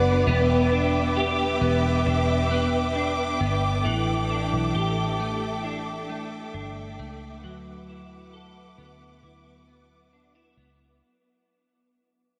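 A floating, ethereal dream pop passage in D major at 67 BPM opens with a lush bowed string section holding sustained chords with vibrato and portamento, a bright, twangy clean electric guitar picking arpeggios through ensemble chorus and analog delay, and a round, foam-muted picked electric bass giving a punchy, dark low end. The harmony moves from Em7 to A7sus4 to D69, and the whole mix is soaked in a huge ambient reverb while fading out from the start. The strings and bass stop at 11.0 seconds, leaving the guitar to ring on alone until 11.6 seconds in this fragment cut from a longer piece.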